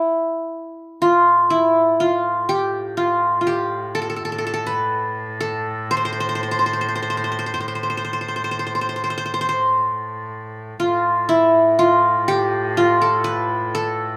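A wet studio reverb with a 0.6-second decay frames this longing, melancholic Turkish piece in A makam nihavent, moving at 122 BPM counted in eighths in a straight 10/8, where an up-front acoustic qanun, played with fingerpicks and ringing with a bright-edged triple-string shimmer, carries the melody from the start, while a distant, reedy, nasal bowed cello with a gut-string, period-style tone enters at 1.0 seconds to sustain a low A drone beneath it until the fragment breaks off at 14.2 seconds.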